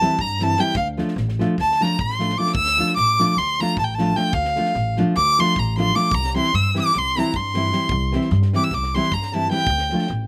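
A focused, bowed violin takes a fiery, virtuosic solo up front from the very start, its clear tone shimmering with vibrato over a fingerpicked nylon-string guitar whose fresh strings sound full-bodied and deep. A woody pizzicato upright bass on steel strings anchors the lively 9/8 Balkan wedding-band groove, while a tight kick and high-tuned snare sit in the background, adding a natural small-room snap. The dry, open-air sound keeps the cut from a longer piece immediate as the harmony moves between C and D minor.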